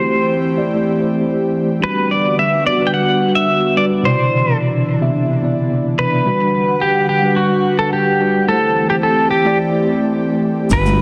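Lush hall reverb and a touch of small-room ambience surround this dense, heavily limited modern mix, a fragment cut from a longer sunset chillout piece with a smooth, blissful mood in straight 4/4. Up front, a bright, clean pedal steel guitar carries the melody, played with fingerpicks, slide and volume swells, its compressed tone trailed by tape echo. Beneath it, a mellow tine electric piano heard through its built-in speakers plays the accompaniment with its own tape echo. An airy, breathy, detuned pad with chorus holds long sustained chords as the harmony moves from Am7 through Gmaj7 and Cmaj9 and back. At 10.7 s the rhythm section arrives just as the fragment closes: a growly, up-front fretless electric bass, a deep, layered electronic kick drum with overdrive, and a faint brushed shaker and hi-hat. Congas join in the background at 10.9 s.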